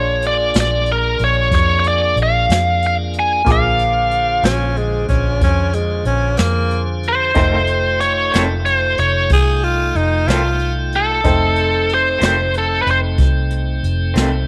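A slow blues in 12/8 at 62 beats per minute, this swaggering, gritty excerpt moves from Bb7 to F7 at 7.4 seconds. An overdriven, biting lead guitar carries the melody up front, while a dark, foam-muted electric bass gives a round, punchy low end and a brush drum kit sets a boomy kick under a medium-tuned snare and hi-hat. Behind them, a bright upright piano adds woody accompaniment with audible action noise, and a piping tonewheel organ holds sustained chords through a slow rotary speaker. A raspy tenor saxophone joins at 4.4 seconds with a growling second line full of scooped notes and light vibrato. From the chord change, an electric guitar through a small old amp adds slightly broken-up, lo-fi accompaniment with tremolo, and light studio reverb surrounds the whole band.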